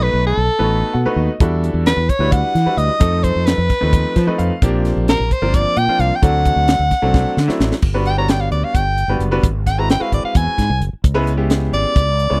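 Over a straight 7/8 pulse at 262 BPM in eighths, this soaring electric jazz fusion excerpt sets a present, jazz-styled soprano saxophone, with light vibrato, scooped notes and slapback echo, against a brilliant, smooth vintage grand piano with long sustain that adds short fills, a direct, amped fretless electric bass up front, and a tight funk drum kit with bright cymbals and a high-tuned snare that enters at 1.4 seconds and whose fill at 7.1 seconds leads into the saxophone solo from 7.8 seconds, all captured in a dry, close 1970s-style studio recording.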